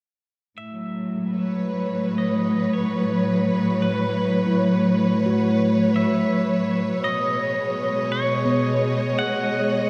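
This ambient excerpt drifts at a serene 56 BPM in 3/4 with a straight feel. A dark, woody studio string section sits up front, holding lush bowed chords with vibrato and a smooth top, moving from A69 at 0.6 seconds to B69 at 7.0 seconds. Over it, a clean, compressed electric pedal steel guitar carries the melody between B4 and F#5, played with fingerpicks and slide, shaped by volume swells and fading in through a tape echo. From 1.2 seconds, a handpan in the background adds meditative, ringing arpeggios of nitrided steel struck with the fingertips, also fading in and colored by tape echo. A wet cathedral reverb with a 5.9-second decay places the whole piece in a vast, echoing space, giving it a calm, warm glow.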